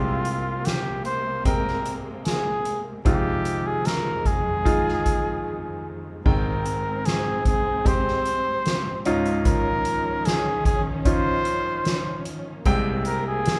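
A moderate large-room reverb frames this hopeful, heartfelt pop ballad in Ab major at 75 BPM, where a clear, close-miked flugelhorn sings the melody with vibrato over a natural, up-front grand piano, distant lush strings bowing sustained chords with expressive portamento, and a soft-mallet drum kit with dark cymbals, a fat snare and a boomy kick that enters at 0.2 seconds, with a brief break from 5.5 to 6.3 seconds before the second section.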